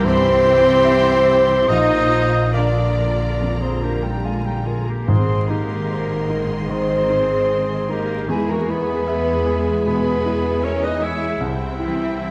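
A mellow French horn section holds sustained chords at the front of this moving, hopeful cinematic score, which unfolds at an unhurried, rubato pace. A lush violin section carries the melody, while a second, higher group of violins, a clear, roomy clarinet and an airy silver flute with a crisp attack weave supporting lines around it. Underneath, a felt-muted upright piano adds soft, intimate accompaniment, a concert harp rings out quiet fingerpicked arpeggios, and the violas join at 0.1 s with a close, bowed fullness. Cellos with light vibrato and expressive double basses anchor the low end as the harmony moves from C through Bb and Ab to E before returning to C. Timpani struck with hard mallets make a brief, articulate appearance between 5.1 and 6.3 s. The whole passage sits in a generous scoring-stage reverb with a layer of vinyl crackle, and it is cut from a longer piece.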